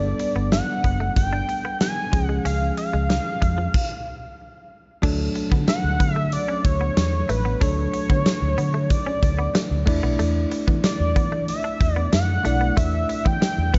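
This 1980s-style pop excerpt is romantic and nostalgic, moving at 93 BPM in a straight 4/4 in D major, tuned slightly flat with A4 at 437 Hz. An octave-doubled sawtooth lead carries the melody with a bold, retro, full-bodied tone, its fast attack and sustained notes shaded by vibrato, chorus and digital delay. Beneath it, a bell-like tine electric piano plays clean accompaniment, and a vintage, foam-muted fingered electric bass gives a round, punchy low end. A twangy, direct-recorded clean electric guitar picks a compressed riff in the background, treated with analog chorus and digital delay, while a big rock drum kit sits up front with a punchy kick, a medium-tuned snare, bright cymbals and tambourine in a big room. A stop falls from 3.7 to 5.0 seconds, and at 5.0 seconds the second section opens on Dmaj7 before moving to Asus4. The production is dark and warm under light reverb.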